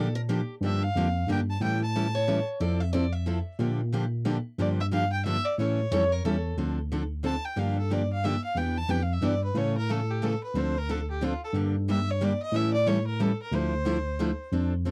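Virtuosic and bittersweet, this fragment of acoustic string swing in the jazz manouche style moves at 181 BPM in a lilting 3/4, with a swung feel and a D minor tonality. A bright, fresh-stringed steel-string acoustic guitar carries the accompaniment throughout, while a worn, slightly out-of-tune tine electric piano holds down the bass line in the low register, its clean tone heard through built-in speakers. A boxy archtop guitar adds a picked second line in the upper register during the opening seconds and returns briefly just before 6.6 seconds, with finger squeaks audible on both guitars. The violin, nasal and earthy with light vibrato and a smooth top, states the melody in brief phrases before taking a solo from 6.6 seconds, when the harmony turns from a Bb6, Gm7 and A7 cycle toward Dm7 and finally settles on Dmadd9. The sound is dry and close in the manner of a 1970s studio recording, with light reverb and every part placed up front.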